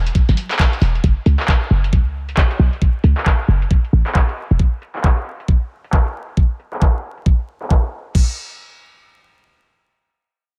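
Dry, vinyl-crackled and cut from a longer piece, this skippy, late-night two-step UK garage groove in F# minor swings at 135 BPM. It has a knocking, tape-warm layered kick up front and a punchy, overdriven analog drum machine of snare, handclaps, hi-hats and crash cymbal, with a short room on the snare, claps and hats and a filter sweep until 8.2 seconds. A tight, sine-based 808-style bass with a noise layer and tube saturation has a fast attack, decays, and drops out at 4.6 seconds.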